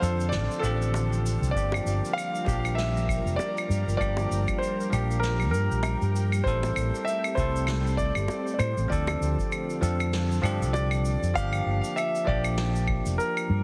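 Warm and smooth, this sunset chillout excerpt drifts along at 98 BPM in G dorian, with a gentle swing on the sixteenths and a short harmonic loop moving from Dm7 through Gm7, Am7 and Dm7 before settling back on Gm7. A polished, present grand piano carries the melody, its notes touched with digital delay, while a bell-like, barky tine electric piano accompanies it from beneath with the same echoing treatment. An ethereal detuned sawtooth pad sits in the background with a slow attack and long release, its ensemble chorus, built-in reverb and vintage 12-bit sampler grit lending a hazy shimmer until it drops out at 11.3 seconds. Up front, a dark, round fretless electric bass anchors the groove with a punchy, amped tone. A distant, roomy kit of shaker, brushed snare and claves keeps time with a rolled-off top, high-tuned bongos tap quietly in the background from 0.9 seconds, and a deep, dry, tape-warm electronic kick enters at 1.6 seconds. 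A lush hall reverb surrounds the mix, and heavy multiband compression gives the whole a dense, radio-ready finish.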